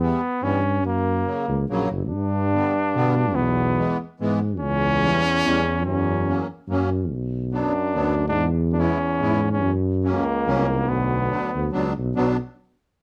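Jolly and bouncy, this short cut from a longer alpine folk piece has an alpine dance band playing a brisk 143 BPM waltz in 3/4, set in B harmonic minor with the tuning raised to A4 = 444 Hz. A mellow trumpet carries the melody up front in a classical style with light vibrato, sitting low in its range, while a musette accordion with its reedy, shimmering wet tuning fills out the accompaniment alongside it. Underneath, a tuba, also mellow and up front with light vibrato, anchors the bass, and from 2.1 seconds a clear euphonium adds a second line from further back in the mix. The harmony moves through a minor progression that takes in a diminished chord and a dominant seventh before settling back on B minor near the end. Light reverb and a dark, warm production give the band a soft, rounded sound.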